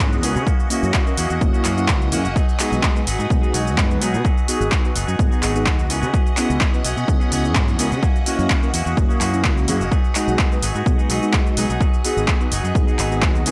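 Filtered disco house at 127 BPM in B major, this sunny, funky excerpt rides a dry, overdriven analog drum machine of handclaps, hi-hat and shaker, joined at 0.5 seconds by an up-front, punchy electronic kick, all set against a gritty hardware sound in a small room. A round, detuned synth brass with chorus, phaser and vibrato carries the accompaniment alongside a warm fingered electric bass with tube saturation and a clean, picked semi-hollow guitar riff, every one of them pumping with the sidechain. Behind them a swirling, warbling string machine holds sustained chords through F#7, B6, G#m7 and C#m7.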